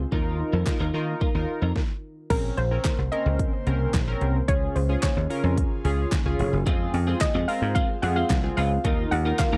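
A driving 110 BPM straight 4/4 groove of punchy, overdriven pop drums with deep snare, metallic hats, handclaps and crash, plus a bright, foam-muted thumbed slap bass pumping up front, carries this bittersweet Bb minor dance-pop excerpt, where a twangy, clean twelve-string electric guitar riff opens and returns at 6.7 s around a brief stop at 1.8 s, a glossy chorused polysynth pumps beneath, an airy, breathy pad sustains very quietly, a soft, round pluck melody enters at 2.3 s over chords moving from Ebsus2 through Bbmadd9, Db and Fm, and a background electronic swell closes the dry, close 1970s-style studio sound.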